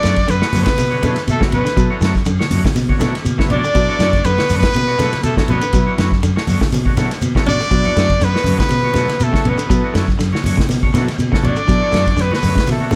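A driving, funky afrobeat groove in 4/4 at 121 BPM, with a light swing on the sixteenths, sits on a single Bm9 chord throughout this 13-second fragment of a longer piece in B minor. Up front, a vintage acoustic drum kit with a punchy kick, medium-tuned snare, dark cymbals and a rolled-off top plays hi-hat, ride, snare and kick in a small, pumping room. A round, foam-muted fingered electric bass anchors the low end, and a grainy, mellow shekere sits in the background from the start, while congas with a low-tuned, thick skin enter at 0.5 seconds from a distant large room. Two slightly broken-up, twangy electric guitars fill the middle: one picks stabs through a tremolo, the other plays arpeggios from 0.3 seconds, beside a buzzy vintage combo organ with light vibrato comping in the background. On top, a bright trumpet carries the melody with pop-style vibrato, shadowed by a present alto saxophone on a second line, all set in light reverb.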